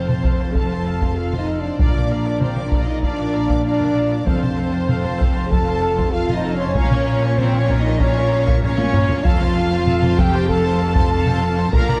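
Heavy-stick taiko drums drive this heroic, majestic stretch of epic orchestral film score, sounding in a live room and breaking into a fill between 8.6 and 9.3 seconds. Alongside them, a mellow French horn section holds sustained chords, while warm, lush cellos and a focused, bowed double bass section anchor the low end. The melody rests with a rich violin section set distant in the background, joined by second lines from a hollow silver concert flute with a soft attack and another violin section with a smooth top, each shaped by vibrato. An intense, clear viola section fills the middle with bowed accompaniment. The harmony moves from F to Bb and back, then turns to Bb minor before settling on F, heard through a moderate scoring stage reverb and a dark production in a passage cut from a longer piece.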